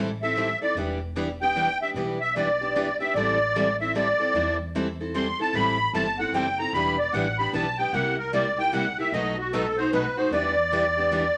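Two bright, picked steel-string acoustic guitars (one boxy with fresh strings, the other set back with audible finger squeak) and a woody, thumpy pizzicato upright bass on gut strings start a swinging jazz manouche groove in three, joined at 0.2 seconds by a reedy, shimmering musette accordion that plays a fiery solo up front in moderate studio reverb throughout this short cut from a longer piece.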